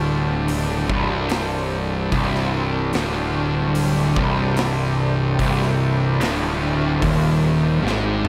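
A thick, dark fuzz guitar sits up front, its distorted riff joined by a second, compressed fuzz guitar in the background and anchored by an overdriven, fuzz-laden picked bass, all set in a brooding, ominous stoner and doom metal excerpt in C minor at 74 BPM. Behind them an organ-like drone holds sustained chords with a detuned, ring-modulated sine and sawtooth tone, slow attack and long release, carrying its own ensemble chorus and reverb. A big acoustic rock kit with a punchy kick and medium-tuned snare enters at 0.5 seconds and closes with a fill from 7.8 seconds, all in a moderate studio reverb.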